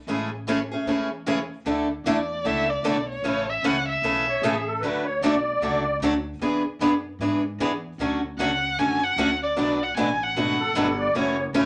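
Playful and charming, this snippet of acoustic string swing in the jazz manouche style moves at 152 BPM in a swung 4/4, with two boxy, picked steel-string parlour guitars playing the accompaniment (one up front with finger squeak, the other bright with fresh strings set in the background) over a woody, thumpy pizzicato upright bass on gut strings, while a warm bowed violin sings the melody with vibrato and portamento from 2.1 s and a reedy, shimmering musette accordion adds a vintage second line from 4.3 s, all in a wet small room moving through chords such as Amaj7, E7 and Bm7.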